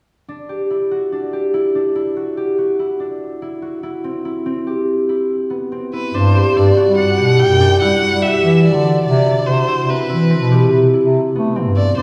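A ringing, fingerpicked concert harp opens at 0.3 s with up-front arpeggios in G major, moving from G5 to C, before a single bowed violin with rich, focused vibrato takes the melody at 5.9 s and a warm, classical-style bass clarinet enters up front on the bass line at 6.1 s over Gmaj7(no3) and Cmaj7. Together they give this restless yet hopeful contemporary chamber piece in 7/4 at 144 BPM a straight feel, heard from further back in a concert hall whose wet reverb lingers.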